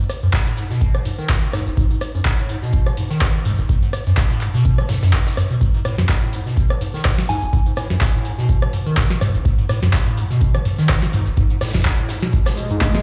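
A swung 4/4 groove drives this gritty acid house clip, cut from a longer piece, built on a deep, up-front electronic kick and a booming analog drum machine with a crisp snare, metallic hats, handclaps, rim clicks, cabasa and toms, while a very quiet acoustic kit adds an airy, polished layer of hi-hat and snare. The liquid acid bass riff is the centrepiece: squelchy yet smooth, resonant square-wave tones with a filter sweep, colored by phaser, tube saturation, lush chorus and digital delay, all sitting over a G#m7 harmony. A soft, pure FM bell touches down for a single mellow note at 7.3 seconds, its long release smeared by chorus, phaser and tape echo. An electronic swell comes in at 12.5 seconds, and a drum fill lands at 12.8 seconds just before the clip ends. A moderate plate reverb surrounds the mix, which sounds as if played through a big system in a bare room, with a dark top end.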